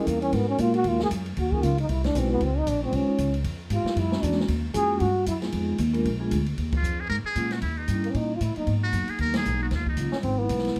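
A breathy, whispered trombone solos up front for the first 6.6 seconds of this late-night, swinging small-group jazz piece in Eb minor at 231 BPM, then a buzzy, thin trumpet with a metal mute takes the melody at 6.8 seconds and the trombone rejoins at 8.0 seconds, all over ringing soft-mallet vibraphone with motor vibrato, woody pizzicato upright bass, a small-room drum kit with dark cymbals and a boomy kick, band accents and a dark production with light reverb.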